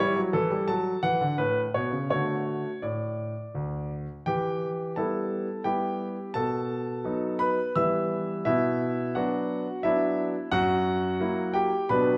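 A solo concert grand piano opens this playful, cheerful fragment of a classical-period sonatina, moving through A7, D/F#, A and D in D major at 86 BPM in 3/4 with a rubato feel. At 4.3 s the music turns to E minor, passing through B7, Bm and F#7 across a range from D2 to E6 until it breaks off at 12.2 s. The up-front piano sounds clear and polished, with a deep bass and long sustain, set in a wet recital hall reverb.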